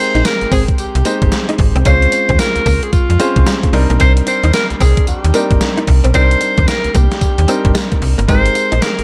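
New jack swing R&B at 112 BPM in C minor, this slick, punchy excerpt cut from a longer piece rides a swung sixteenth-note feel over chords moving from Abmaj9 to Dbmaj7 and Cm9 before returning to Abmaj9. A breathy alto saxophone carries the melody with jazz-style vibrato, sounding roomy and distant in tone yet placed up front. A polished grand piano accompanies it, intimate enough that its action noise can be heard. A snappy FM bass with a metallic, digital attack sits prominently underneath, entering at 0.1 seconds. At 0.2 seconds a gated 80s drum machine arrives with a thumpy kick, gated reverb snare, hi-hat and tambourine, re-recorded in a large room and kept up front. A clean, direct-recorded electric guitar adds a picked, compressed riff with ensemble chorus in the background, all set in a digital ambience.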